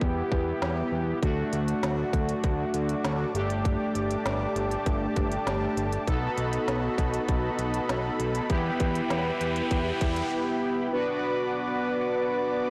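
A driving, nocturnal synth-pop excerpt in 4/4 with a straight feel opens on bold, sawtooth-edged analog synth brass with chorus and vibrato, a thick, nasal analog bass with tube saturation, and an overdriven electronic drum kit of tight kick, woody snare and crisp hats, all placed up front. From 1.2 seconds a brassy analog pad with a soft attack and chorus sustains chords above, and an electronic riser builds from 8.1 seconds as the bass and drums drop out around 10 seconds, leaving the brass and pad on a Bm chord. A lush hall reverb surrounds the blown-out, overdriven recording as the harmony moves through Em, D, Gsus2 and B7.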